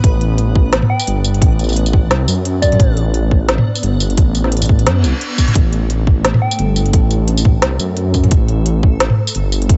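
A half-time drum and bass groove at 174 BPM in 4/4 drives this cinematic, spacious excerpt, with a light swing on the 16ths and the harmony resting on a Gmaj9 chord. A hard-clipped electronic kick sits up front, joined by an organic-sounding electronic kit of woody snare, crisp hi-hats, tambourine and toms, given a tape-tinged finish and re-recorded in a small room. Alongside them, a dark detuned saw bass rumbles and beats up front with saturated, sustained unison tones. A bright, reversed, granular texture swells softly in the background with its own built-in reverb, while a soft FM synth bell drifts in at 0.9 seconds and again at 6.4 seconds, its pure, mellow notes colored by chorus, phaser and tape echo. A brief electronic reverse cymbal rises at 5.0 seconds, and the overall mix stays dry and dusky, its top end rolled off.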